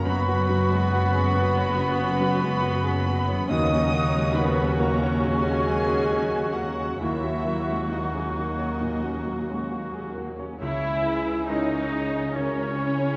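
Heard from further back in a reverberant concert hall, this bittersweet, longing excerpt of cinematic film score unfolds in a slow, rubato 4/4, its chords moving from F#sus4 to D#m7 and settling on C#m near 10.6 seconds. Muted violins carry the melody in a veiled, con sordino tone with light vibrato, while a second muted violin line, a dark, distant clarinet, a close-miked oboe and a hollow, pure silver flute weave supporting lines beneath it, the flute holding a high C#6 until 10.2 seconds. A clear, vintage grand piano with short sustain and a bright, thumb-plucked harp ringing out arpeggios provide accompaniment alongside muted violas. A French horn section sustains warm chords in the middle register. Underneath, a very quiet cello section and a lush, somewhat louder double bass section, both muted and bowed, anchor the low end.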